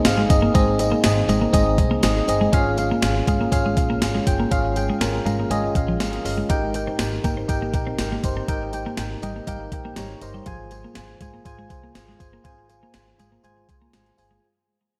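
A straight 4/4 pulse at 121 BPM drives this uplifting, glossy 1980s-style pop passage, cut from a longer piece, with a gated digital drum machine up front: a thumpy kick, hi-hat and a snare bathed in gated reverb, its tone tape-warm and sampler-like. A background tambourine adds a jingly, band-limited shimmer, while a pizzicato upright bass entering at 0.1 seconds supplies a woody, steel-stringed low end. The FM electric piano carries the accompaniment with a glassy, bell-like attack and a warbling chorus, stepping forward with fills around 5.0 and 9.0 seconds. A bright, twangy twelve-string electric guitar plays a clean, compressed, picked riff through analog chorus and delay. The harmony moves from Ab through Db and Eb to F minor, and the whole dreamy mix sits in a lush hall reverb as it fades out across its roughly 14 seconds.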